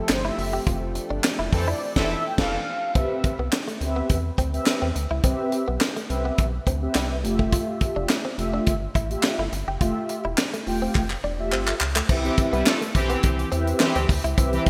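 Early-eighties boogie funk with a feel-good, smooth mood, cut from a longer piece, opens with an analog polysynth solo over a thick, warbling unison pad that stops at 2.9 seconds. Mellow, round synth brass with chorus and a rubbery, hollow square-wave bass carry the accompaniment throughout. A tight, up-front funk drum kit with a high-tuned snare, handclaps, hi-hat and crash sits in gated reverb, a clean, direct-recorded electric guitar plays a compressed riff in the background, and a bold, fat analog synth brass second line appears briefly early on, returning at 12.2 seconds after a drum fill, all within a bright digital production and a moderate, lush hall reverb.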